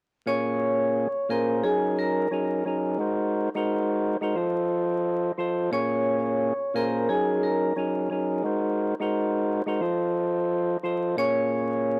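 Moody and gritty, this short excerpt of a hip hop track sits in a swung groove, cut from a longer piece. A percussive tonewheel organ carries the accompaniment, its fat, lightly overdriven tone sitting up front with third harmonic percussion and a stopped rotary speaker, filtered at both ends of its range. Over it, a vibraphone struck with hard mallets plays the melody, metallic and ringing with a slow motor vibrato, set in a boxy small room and trailed by analog delay. Both parts play together from 0.3 to 12.0 seconds over a looping progression that moves from Bbm7 through Gb69 and Ab7 to F7 before landing back on Bbm7. The dry, hardware-recorded sound carries a layer of vinyl crackle and a light touch of studio reverb, giving the whole a gritty character.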